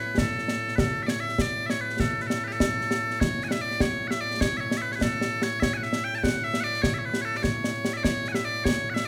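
Ceremonial and proud, this short cut of Scottish pipe music in 6/8 puts loud bagpipes up front with a bright, piercing, continuous solo melody, joined at 0.2 s by close, dry acoustic concert snare and bass drums with dark cymbals, the band playing live together in a large studio whose moderate reverb lends the room some depth as the tune moves into a new section at 3.2 s.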